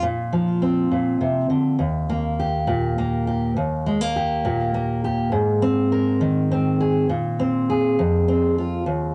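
A home cassette recording with light reverb gives this short fragment of a longer folk piece a soft, homespun glow. A single fingerpicked steel-string acoustic guitar carries everything, its jumbo body sounding full and up front, with tape colouring and an analog delay trailing behind the notes. The mood is anthemic yet warm, moving in a lilting 6/8 with a straight feel and spanning from deep bass notes up into the guitar's middle register. It opens on a suspended Bbsus2 chord before settling onto Eb at 1.8 seconds, then shifts to Ab at 5.3 seconds and returns to Bbsus2 at 7.1 seconds, closing the passage on an open, unresolved colour.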